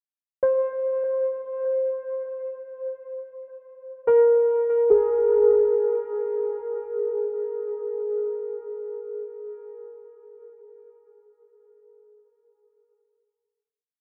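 Muted, felt-like synth keys play alone in this brief ambient piece, placing scattered notes between Ab4 and C5 in free time with a weightless, peaceful mood. Their dark, intimate tone has a fast attack that then decays, softened by chorus and delay and set up front within a huge, wet reverb that lingers for 8.2 seconds. A final note arrives at 4.9 seconds and the keys fall silent at 9.9 seconds.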